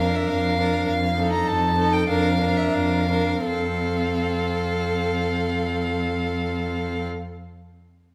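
A cheerful, graceful classical-period movement for string quartet in F major opens with all four bowed players sounding together from the start, in 2/4 with a rubato feel between 82 and 104 BPM. Up front, the first violin carries the melody high in its range with a rich, smooth vibrato, while the second violin sits close beneath it on a clear, focused second line. The viola fills in the accompaniment with an even, vibrato-coloured tone, and the up-front cello anchors the bass on a low F, its soft attacks and expressive portamento giving the foundation a singing quality. The harmony moves from Bb/F to F7 and back to Bb/F, with the playing slowing down between 0.3 and 3.5 seconds before settling on F as a new phrase begins. A wet recital hall reverb surrounds the quartet in this short excerpt cut from a longer piece.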